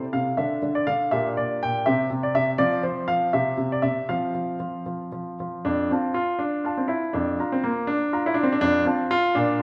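A clear, polished baby grand piano sits up front in a moderate recital hall reverb, playing alone through this short 9.6-second passage cut from a longer piece. It is a cheerful, graceful classical-period sonatina in F major and 6/8, moving at 81 dotted-quarter beats per minute with a flexible rubato feel, tuned to A4 = 441 Hz. The piano spans F2 to Bb5, with an opening phrase passing through G minor, C and F before a new section begins at 5.6 seconds and settles on F.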